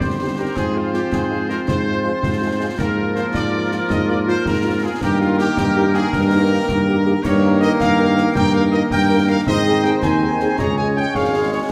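Set in a wet, roomy scoring-stage reverb, this proud, festive wind-band march in 6/8 at 108 BPM in Eb major is heard in a short cut from a longer piece: smooth-topped trumpets carry the melody with light vibrato over a clear, close woodwind second line, warm soft-attacked trombone chords, a mellow tuba bass sitting up front, very quiet distant French horns entering at 0.2 seconds, and concert snare, bass drum and dark clash cymbals.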